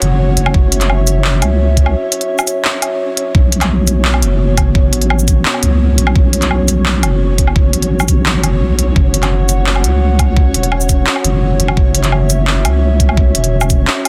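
A dark, nasal analog pad pumping with sidechain, a deep wobbling bass, a crisp tape-tinged electronic kit of handclaps, hi-hat, shaker and woodblock, and a grainy, flickering texture in the background open this tense, cinematic half-time drum and bass excerpt together, with a knocking, layered kick joining at 0.5 seconds and a break from 1.9 to 3.4 seconds before the dense, heavily limited mix carries on with little reverb.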